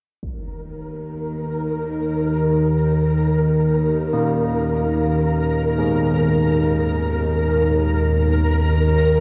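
A huge, bright impact, muffled by a low-pass filter, opens this cavernous, desolate dark ambient drone in free time, and a sustained drone ranging from Eb2 to Eb3 enters up front at 0.7 s, its sawtooth and sine tones resonating with slowly moving overtones under chorus. A flickering, grainy granular texture hovers, mellow, on Bb4 behind it, and from 4.1 s carillon bells ring bronze arpeggios between Ab3 and Bb3, airy and padded, trailing diffuse delay and shimmer reverb. The production is dark, steeped in a vast reverb with a long decay, and the cut ends mid-piece.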